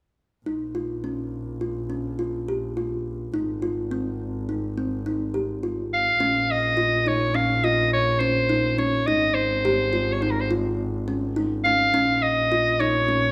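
A clear, vintage-toned soprano saxophone sits up front from 5.9 s, carrying a solo pop-style melody with vibrato over this hypnotic, pensive excerpt of contemporary chamber music in 5/4 at 105 BPM, set in Bb dorian. Underneath, a woody, thumb-plucked kalimba plays short arpeggios from 0.5 s, while a single bowed, muted double bass adds a dark, veiled line with vibrato and portamento. The chords move between Bbm and Ab6 colors, and a moderate recital hall reverb surrounds the ensemble.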